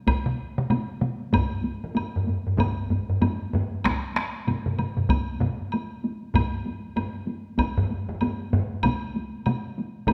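A recital hall's wet reverb, with a 1.5-second decay, surrounds this short excerpt of Japanese traditional taiko drum ensemble music, which feels driving and powerful. It moves at 96 BPM in 4/4 with a 60% swing on the sixteenths. Two taiko ensembles struck with hard sticks run through the whole passage: one sits in a small room, and the other rings in a live room and stands up front. A close, dry woodblock adds a woody click throughout. A solo taiko player, miked close and also using hard sticks, joins at 0.3 seconds. A third ensemble with heavy sticks, also in a small room, comes in at 1.3 seconds and drops out at 8.7 seconds.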